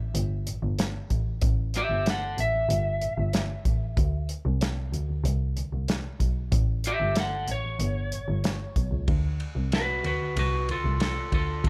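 A bowed double bass opens this short, gritty soul blues cut from a longer piece, its rich, expressive tone sliding between notes with vibrato and a soft attack, close and up front. A soul drum kit follows almost at once at a laid-back 94 BPM in straight 4/4, playing hi-hat, kick, snare and ride with a small-room, rolled-off sound, dark cymbals, a medium-tuned snare and a punchy kick. At 1.8 seconds a lightly driven electric lead guitar takes the melody, picked and compressed, its slightly broken-up tone sitting forward in the mix. The harmony centres on D mixolydian, moving from A5 through a chordless stretch and A7 before settling on D7. At 9.1 seconds the music shifts to a new section where the guitar steps out into a solo. The sound is dry and intimate, with little reverb.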